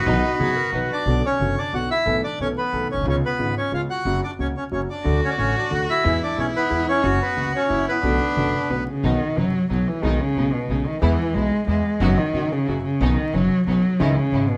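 A wet club reverb and a layer of vinyl crackle surround this sultry, passionate tango, a short cut from a longer piece in 3/4 at 181 BPM, played with a rubato feel in B minor. A reedy, airy bandoneon sits up front with the melody, while a clear concert grand piano with deep bass and long sustain carries the accompaniment. A woody, thumpy upright bass plucks gut strings beneath. In the opening moments a mellow, classical-style clarinet and a smooth studio string section add brief touches. The bowed cello, close and expressive with vibrato and portamento, carries a second line under the bandoneon. After the bandoneon stops at 8.8 seconds, the music turns to B major at 9.0 seconds and the cello takes a solo as a rich, even string section returns with stabs.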